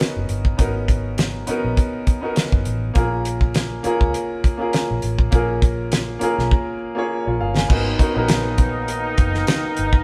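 Swinging sixteenths at 101 BPM in 4/4 drive this smooth, bittersweet cut of lush 1970s-style soul in G# dorian, where a damped, up-front drum kit with a fat snare and dark cymbals plays a fill from 6.5 seconds, a bright baby grand piano with audible action noise sits close over G#m11 and A#m7 chords, a round, foam-muted fingered electric bass holds the low end, a mellow, distant horn section in octave doubling adds soft-attack stabs from 7.7 seconds, and a barely audible group handclap enters at 8.3 seconds, the band playing live together in a stone room with moderate reverb.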